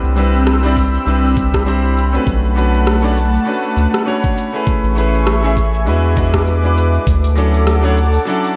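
A round, deep analog bass sits up front in this blissful, relaxed sunset chillout excerpt, its dark, nasal tone carrying a swung groove under a clear grand piano bathed in diffuse ambient delay and an airy, breathy pad with chorus that holds slow, mellow chords moving from Cmaj7 through Bm7, Amaj7 and E7 to Dmaj7. An overdriven deep house kit of cabasa, metallic hi-hat and rim click ticks along from the start, joined at 0.8 s by a gritty, thumpy, compressed electronic kick that drops out at 7.2 s. The whole mix is dreamy and soaked in a lush hall reverb.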